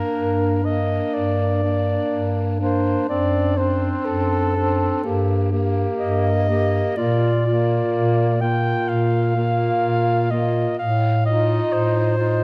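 A mellow soprano saxophone carries the melody up front, singing with a light vibrato in this solemn, yearning classical piece for a single-reed quartet, cut from a longer work. Beneath it, a clear, close-miked clarinet traces a second line. A tenor saxophone with a warm, vintage tone and its own vibrato fills in the accompaniment. A dark bass clarinet with a smooth top anchors the bass, sitting prominently forward in the balance. The four voices play together throughout the 12.4 seconds in a slow 4/4 with a flexible, rubato feel, and the minor-key harmony turns toward a brighter major chord near the 7.0-second mark before settling on a dominant color. A moderate scoring-stage reverb with a 2.0-second decay gives the ensemble a natural, concert-like space.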